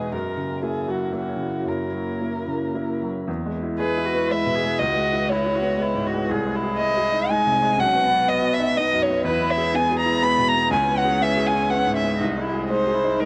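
A dark, woody solo violin carries the reflective, longing melody up front, its smooth vibrato trailed by tape echo, over a clear, open baby grand piano whose long-sustaining accompaniment shares the foreground. This neoclassical passage for piano and strings moves in a rubato 3/4 at roughly 109-126 BPM in C# dorian, with a warbling, nostalgic, lo-fi tape-like pad holding detuned, chorused chords in the background. At 3.8 s an intimate, soft-attack cello enters with a second bowed line, and a moderate plate reverb surrounds the whole fragment, cut from a longer piece.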